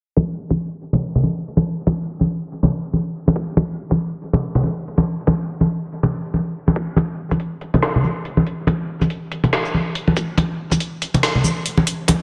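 Dense, heavily limited and bathed in echo-chamber reverb, with a filter sweep running throughout, this heavy, meditative deep dubstep cut at 141 BPM in a swung half-time feel sets a muffled, pitched-down, thumpy electronic kick beneath up-front acoustic congas trailing dub echo, until an overdriven, layered garage kit of woody snare, metallic hi-hats and shaker enters at 7.0 s.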